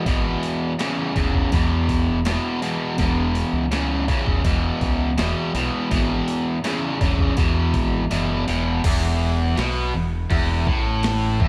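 Gritty and swaggering, this excerpt of blues rock power trio and southern rock in E major at 82 BPM puts a bright, overdriven, double-tracked stack guitar riff with spring reverb up front over a growling fingered electric bass with its own overdrive and a pitched-down, compressed sampler-style drum kit with a thumpy kick and high-tuned snare, whose kick and snare drop out from 8.1 to 8.8 seconds just before a new section begins, captured as a band playing live in one room with moderate studio reverb.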